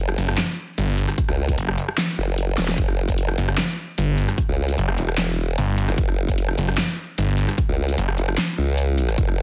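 A snarling, detuned saw bass growls up front through distortion and a resonant moving notch, stacked over a formant-sweep wobble bass whose chorused sawtooth-and-sine tone wobbles from the very start of this heavy, chaotic, half-time dubstep fragment. A layered dubstep kit with a huge snare, bright hats, handclaps and rim clicks drives the groove, and a punchy, tape-warm electronic kick joins at 1.2 seconds, with a drum fill at 2.6 seconds. The dense, heavily limited master sits in digital ambience, with the drums carrying a small room sound.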